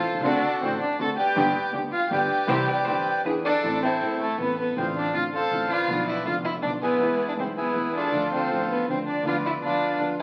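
A very old 78 rpm record with vinyl crackle and a moderate large studio reverb frames this melancholic, passionate tango excerpt, which moves at 160 BPM in 3/4 with a rubato feel. Up front, a reedy, dark, airy bandoneon carries the melody while a single bowed violin, close and expressive with vibrato, soft attack and portamento, shapes a second line beside it. A clear, worn upright piano, slightly detuned with short sustain, provides accompaniment, and a rich, very quiet studio string section adds smooth bowed stabs beneath. In the background, a woody, growly pizzicato upright bass anchors the low end, and a dark, clean, compressed hollow-body electric guitar briefly adds a picked second line between 2.5 and 3.6 seconds. The harmony starts in C major over D7, G, C and E7, then turns to A harmonic minor at 3.6 seconds, moving through Am, Dm7/A, Bdim and E toward Dm and Bdim/D.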